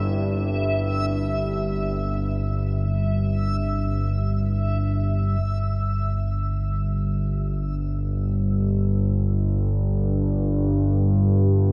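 Cassette-tape character and a huge ambient reverb wrap this unsettling, dark ambient drone excerpt in free time. An up-front analog drone, sawtooth and wave-folded with chorus, anchors the low end throughout. Over a C chord, a very quiet, warbling pad with detuned vintage character and a reversed granular texture hover above it until about 5.4 seconds, after which the drone carries on alone under a filter sweep.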